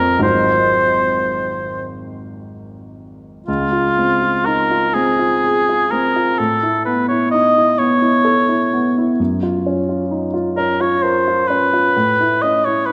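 Classical impressionist music for oboe and grand piano, this dreamy, pastoral passage is cut from a longer piece and moves in a slow, rubato 6/8 at roughly 36-44 BPM counted in dotted quarters, tuned slightly high at A4 = 441 Hz. The mellow oboe carries the melody as an up-front solo voice in classical style, its light vibrato coloring a line that stays in the middle of its range, from F4 to Eb5. Beneath it, the grand piano supplies a warm accompaniment with short sustain, reaching from deep Ab1 up to Bb4, and sits just behind the oboe in level. The harmony drifts through lush, colorful chords, opening on Ab13 before a new section arrives at 3.5 s on Dbmaj7, then passing through Aadd9 and Gbmaj7 to settle on A near 11.9 s. A wet scoring-stage reverb with a 1.6-second tail surrounds both instruments, and the softened top end gives the sound a gentle, hazy glow.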